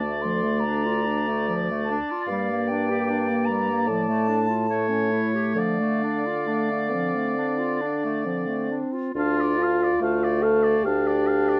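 Solemn and yearning, this slow, romantic classical movement for wind quintet, cut from a longer piece, moves at 66-76 BPM in D minor with a free, rubato feel. A pure, crisp-edged silver concert flute carries the melody from a distance, while a clear oboe with light vibrato sings a soft-attacked second line; a bright clarinet and a warm French horn fill the accompaniment, and a dark, up-front bassoon anchors the bass. Close, detailed microphones and light reverb frame the harmony as it moves from D minor through G minor and A7 before settling back on D minor at 5.6 seconds.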